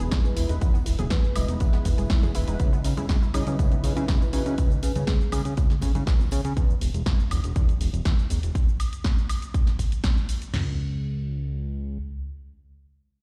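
A fat, saturated analog bass sits up front through this nu-disco excerpt, its detuned sawtooth and wave-folded tone carrying a filter sweep from 0.0 to 12.0 seconds at 121 BPM in C# minor. Two layered house drum kits drive the straight 4/4 drop, one with a punchy kick, snare, toms and crash cymbal leading the mix, the other adding bright hi-hats, shaker, snare and woodblock, both in a small room ambience. Ringing acoustic tambourine, bongos and congas sit in the background until 6.5 seconds. Over Emaj7 and C#m11 chords, a dark, round synth brass with chorus, cassette tape coloring, sidechain pumping and dub echo plays accompaniment, while a lush, warbling unison pluck spins arpeggios with the same pumping and echo. A mellow vibraphone with soft mallets and motor off adds a metallic melody with dub echo from 0.2 seconds, lending a cosmic, sleek mood before the harmony drops out at 6.6 seconds and the music moves into a new section at 10.5 seconds.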